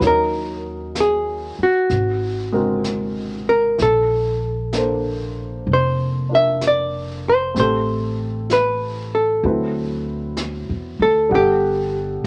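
Swung eighths at 64 BPM in 4/4 carry this intimate, romantic jazz ballad, where a dark, clean hollow-body electric guitar plays the melody up front over a baby grand piano with short sustain and audible action noise, a woody, growly pizzicato upright bass, and a brushed kit of snare and hi-hat sitting low in the mix, in a moderate studio reverb as the harmony moves from Ebm7 through Bbmaj9 to Gmaj9.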